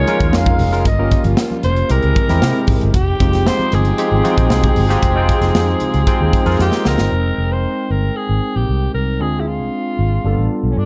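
Polished 1980s jazz-funk pop in F minor at 115 BPM, this straight 4/4 fragment carries a nocturnal, urban mood under a dark production with little reverb. A raspy, growling alto saxophone leads the melody, its gritty vibrato sitting over a barky tine electric piano that is lightly overdriven and treated with analog chorus, bright and up front through a combo amp. A foam-muted fingered electric bass gives a round, punchy low end, while a crisp fusion drum kit with a punchy kick and medium-tuned snare drives the groove alongside very quiet, thick-skinned congas. A very quiet bowed string section holds smooth, sustained chords beneath, moving through harmonies such as Db69, Gm7b5 and Fm9. A drum fill at 6.6 seconds leads into a new passage at 7.1 seconds, where the strings, drums and congas drop away and the saxophone, electric piano and bass carry on over Fm11, Dm7b5 and G7.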